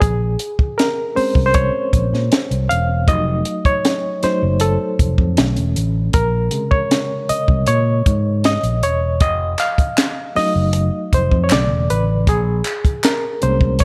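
A straight 4/4 groove at 78 BPM comes from a compact cocktail drum kit, dark and smooth with a high-tuned snare, punchy kick and hi-hat, opening this lush, cinematic 1970s-style soul excerpt in Bb minor, while an amped fingered electric bass sits up front. A barky, reedy electric piano with fast tremolo plays solo throughout, bright and clean through its built-in speakers, over chords moving from Bbm9 to F7b9 and Bm9 and back. At 9.6 seconds a crisp group handclap joins from a distant, large room, and studio reverb adds sheen.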